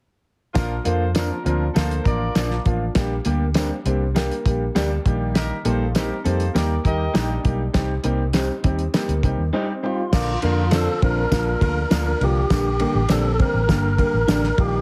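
A straight 4/4 groove drives this urgent, passionate fragment of uptempo 1960s-style soul, anchored by a cloth-damped drum kit with a fat snare, tight kick and dark cymbals, sitting up front with a gritty, saturated thud. Beside it, a foam-muted fingered electric bass sounds round and amped, while a jingly tambourine shimmers in the background. A woody upright piano supplies natural-sounding accompaniment, a hollow-body jazz guitar plays a dark, clean riff behind it, and a very quiet electric guitar through a small old amp adds slightly broken-up, lo-fi stabs. A tight vintage horn section carries the second line until 11.9 s. At 9.9 s a fat tonewheel organ takes the melody, lightly overdriven with key click, fast rotary speaker and analog delay, as the music moves into a new section. The whole mix has light small-room reverb and a heavily compressed, radio-like sound.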